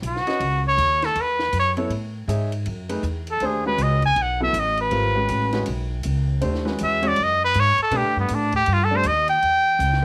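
Light reverb and a small-room ambience frame this modal jazz excerpt, which swings at 160 BPM in 4/4 with a cool, spiritual mood. A clear, vintage-toned trumpet sits up front and carries a solo from 0.1 seconds, singing with vibrato across a range from B3 to G#5. Alongside it, also up front, a pizzicato upright bass with steel strings gives a woody, close foundation, while a compact cocktail drum kit plays softly underneath with a high-tuned snare, tight kick, hi-hat and ride cymbal in a snug, natural booth sound. A baby grand piano enters at 0.3 seconds with mellow, short-sustained accompaniment. The harmony moves from F#m9 to G#m, then to B7alt, and lands on Em at 9.4 seconds as the opening section closes.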